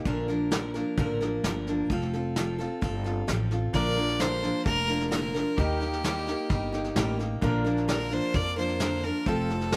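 Heartfelt and sunny, this short cut of honky-tonk and classic country moves at 130 BPM in Bb major, with an up-front, full-bodied picked dreadnought acoustic guitar carrying slapback echo, a woody pizzicato upright bass and a distant, brushed drum kit with a punchy kick all playing from the start, until at 3.7 seconds a biting, earthy fiddle with light vibrato takes a solo while a polished grand piano sits in the background, the whole mix having little reverb.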